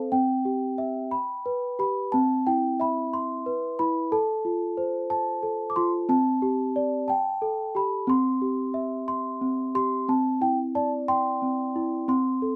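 In a gentle 6/8 lilt at 60 dotted-quarter beats per minute, this innocent, tender children's lullaby in C major, tuned to A4 = 438 Hz, is carried by a solo celesta playing from 0.0 to 12.6 seconds between C4 and D6. Its bell-like, sweet tone, struck with medium felt hammers, sounds close, full and up front against a light reverb, moving through C, G, Cmaj7, F, Gsus4 and Gsus2 before settling back on C. The opening phrase begins again at 10.1 seconds over a Cadd9 chord, where this fragment of a longer piece breaks off.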